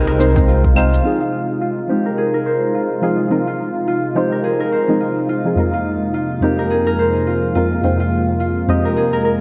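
A fingerpicked concert harp rings up front with arpeggios between F4 and C5, shaped by a low-pass filter, digital delay and slapback echo, and carries a filter sweep from 1.0 seconds onward. This excerpt of organic downtempo sits in F minor at 106 BPM in 4/4, swung on the sixteenths, with a hypnotic, meditative mood as the harmony moves from Fm7 to Abadd9/F. Beneath the harp, a smooth, detuned sawtooth analog pad holds sustained chords up front with chorus and sidechain pumping. A deep, nasal chord stab with a fast attack and short decay adds accompaniment through chorus, pumping and digital delay. For the opening second, a woody, dark pizzicato upright bass plays a low C, joined by a snappy, very quiet cajon, tape-tinged electronic shaker and claves with slapback echo, and a layered electronic kick in the background, and these parts stop by 1.0 seconds. A wet concert hall reverb over a small room ambience gives the piece a big arena sound.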